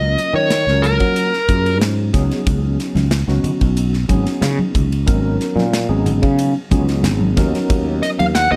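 A dark, overdriven lead guitar states a smooth, picked melody up front for the opening 1.8 seconds and returns at 8.0 seconds in this intense, funky electric jazz fusion excerpt at 92 BPM, over a clean tine electric piano with subtle chorus, a growly, punchy fretless bass, a polished, airy studio drum kit with a tight kick and medium-tuned snare, and thick-skinned, damped congas that enter softly in the background at 3.0 seconds, all in light reverb as the harmony moves from Gbmaj7 to Db9sus4 and on to Bmaj9/D#.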